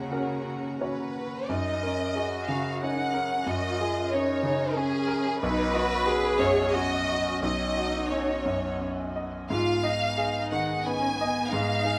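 In a flexible, rubato 3/4 that drifts between 86 and 94 BPM, this hopeful, tender neoclassical piece for piano and strings unfolds in F# major. A chamber violin section carries the melody up front, its tone rich and focused with vibrato and a smooth top, while a single bowed cello sings a second line below with expressive portamento and a soft attack. A clear, slightly worn grand piano, natural in character and also up front, provides the accompaniment. Beneath them, a very quiet, dark string section holds sustained chords played sul tasto with light vibrato, adding an intimate, close shading. The harmony moves from D#m7 to F#add9 at 1.5 seconds, then through Badd9 and G#m, while a moderate reverb gives the sound the space of a large studio in this passage cut from a longer piece.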